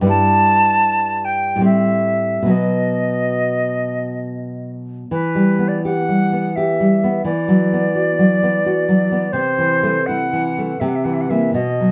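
In a rubato 3/4 that drifts between 66 and 90 BPM, this solemn, elegiac romantic duo in E minor, cut from a longer piece, sets a silver concert flute over a nylon-string guitar. The classical, thumb-plucked guitar with its fresh strings carries the accompaniment through Em/G, Am7 and B. Above it the flute sings a pure, expressive melody with vibrato and a crisp attack, its metallic tone distant and touched by slapback echo, and both instruments sit up front in a moderate studio reverb until, at 5.1 seconds, a new passage moves from Em through Bm/E and Am/C to C7.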